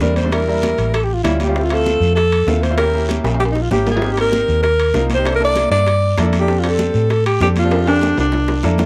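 Sunny and sophisticated, this Afro-Cuban jazz excerpt moves at a brisk 195 BPM in F major, led by a breathy, intimate alto saxophone played up front with vibrato, soft attacks and scooped notes over chords that drift from Em7b5 through Abmaj9 to C13 and F6. A clear concert grand piano comps beneath it, while a dark, round hollow-body electric bass sits forward in the mix. Damped, high-tuned congas, tight and very quiet bongos, a raspy guiro in the background and ringing metal-shell timbales, which enter at 0.2 seconds, drive the groove, with drum fills at 3.2 and 7.7 seconds under a light reverb.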